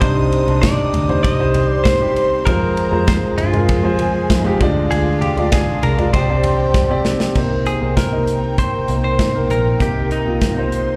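Earnest and driving, this piano-driven pop passage in C minor moves at 98 BPM in a straight 4/4, cut from a longer piece and heard as a live gig through a club PA with light reverb. A concert grand sits up front with deep bass and long sustain, carrying the accompaniment through Cm, Fm, Ddim and Csus2 before settling on Cm7 at 7.4 seconds. A bright, twangy clean electric guitar, recorded direct and compressed with a scooped tone, carries the melody between Eb4 and Eb5, while a chamber violin section plays a soft-edged, intimate second line in the background using sul tasto bowing and light vibrato. Beneath them, a very quiet, distant studio string section holds lush sustained chords, and a vintage foam-muted fingered bass adds a dark, round, punchy low end. An acoustic drum kit with a tight kick and medium-tuned snare drives things forward up front, marking the new section with a fill from 6.7 to 7.4 seconds before stopping at 10.9 seconds.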